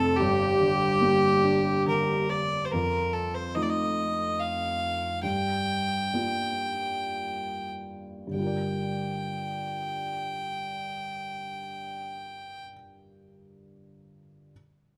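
Mournful and full of longing, this Celtic slow air in G minor unfolds in a rubato 3/4, drifting between 46 and 73 BPM and easing back noticeably through its middle passage. A single bowed fiddle carries the melody with a rich, reedy gut-string tone. An airy alto recorder adds a brief second line with a crisp, chiffy attack and vibrato before it drops out at 2.3 seconds. Beneath them, a felt-muted upright piano sits up front and close, its thick felt giving a soft, mellow accompaniment, with the action noise of the instrument audible. The harmony moves from G minor to F7 and settles on Gm7. A moderate recital-hall reverb surrounds the playing, and the fiddle ends at 12.6 seconds while the piano continues until 14.5 seconds in this passage cut from a longer piece.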